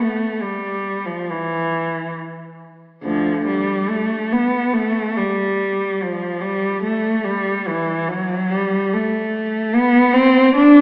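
A single bowed cello, placed up front and singing with vibrato and portamento across a range from D2 to D4, carries this lyrical, nostalgic classical fragment cut from a longer piece. It moves in a free, expressive rubato around 68-74 BPM in 4/4, tuned to A4 = 441 Hz, and is bathed in a wet concert-hall reverb heard from further back in the room through a thin, AM-radio-like sound for its full 10.8 seconds.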